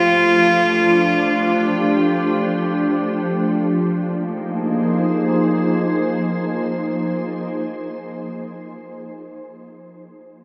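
A single bowed cello, played sul tasto with a soft attack and a pure, floating tone, carries the melody on F4 through tape echo before falling silent at 2.4 seconds. Alongside it, a glassy, ethereal FM pad holds slow-blooming sustained chords from F3 to C5 through ensemble chorus and its own reverb until 8.0 seconds, moving from Dm7 to Fm7 at 3.6 seconds. This reflective, serene ambient fragment, cut from a longer piece, sits in a huge, wet reverb.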